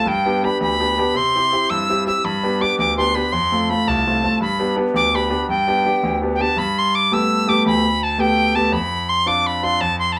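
A reedy wooden whistle with a crisp, chiffy attack and vibrato carries the melody up front in this rollicking, bright Celtic folk excerpt in 6/8, while a brilliant concert grand piano with deep bass supplies polished accompaniment, the pair sounding like a band playing live together in a small room with a wet reverb.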